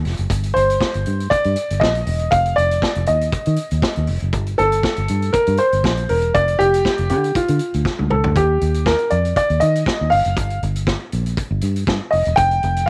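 Light reverb gives this short disco cut from a longer piece a sultry, glamorous sheen at 119 BPM in G minor. A round, dark, foam-muted fingered electric bass and a gritty, saturated vintage drum kit with a tight kick and rolled-off top play throughout, while an up-front baby grand piano carries the melody from 0.5 seconds with a natural, warm tone. A drum fill at 7.9 seconds leads into a new section at 8.4 seconds, where the harmony shifts from G minor and D minor chords to Eb and G7.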